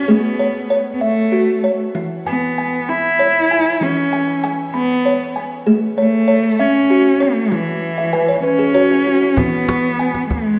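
A gentle six-eight lilt with a straight feel gives this dreamy, calm piece of meditative world music its slow, rocking pulse. A bowed cello carries the melody from the first moment, one expressive player with soft attacks, vibrato and portamento, sitting up front with shimmer reverb and delay trailing behind it. Alongside it a kalimba spins thumb-plucked arpeggios in short, airy notes with a hollow, boxy body, also close to the ear and bathed in its own shimmer reverb, and it steps forward with a fill from 8.0 to 9.4 seconds. The harmony drifts between A and E. At 9.4 seconds the music turns to a new section, and a close, dry cajon played with soft hands joins briefly with faint snares until 10.4 seconds. A recital hall reverb wraps the whole fragment in a wet space, and the piece breaks off as part of a longer work.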